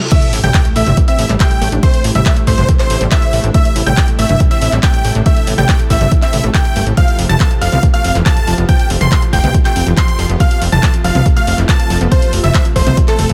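A dry, close-sounding excerpt of euphoric, emotional uplifting trance, cut from the drop of a longer piece, where a huge, thick supersaw carries the melody with vibrato and tape echo over a punchy, up-front electronic kick and an analog drum machine of crash cymbal, handclaps, hi-hat and toms, both re-recorded in a small room. A funky, plucky analog bass enters at 0.3 seconds with sidechain pumping, while a bright, lush unison pluck plays arpeggios and a concert grand piano with deep bass adds a second line in the background, both pumping and echoing. The harmony moves from Am7 to Fadd9 at 7.0 seconds, and a very quiet reverse cymbal and sub drop mark the opening impact and return at 13.0 seconds.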